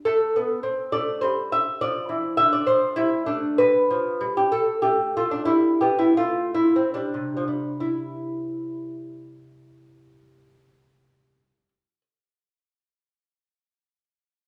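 Classical baroque-style dance in triple time with a radiant, dance-like mood, this short cut from a longer piece features a solo lute played up front with delicate fingerpicking on gut double strings, some doubled at the octave, its rubato phrasing slowing from 2.7 to 7.8 seconds before settling into the closing section, all ringing in the live ambience of a small stone room.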